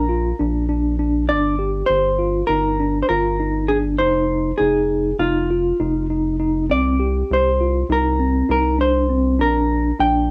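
Driving and brooding, this short cut from a longer progressive instrumental moves in an uneven 9/8 meter with a straight feel. Up front, a vintage hollow-body jazz guitar carries the melody with a dark, clean, picked electric tone, its sound colored by cassette tape. Beneath it, a bright tine electric piano plays arpeggios in a clean voice heard through built-in speakers, trailed by an analog delay. A rubbery square-wave bass anchors the low end with a bouncy, resonant filter pluck, fast in attack yet sustained and dark. The chords pass from Bb through Gm7, Fm7 and Cm7 before returning to Bb at 9.4 seconds, all within moderate studio reverb that gives the home cassette recording a modest sense of room.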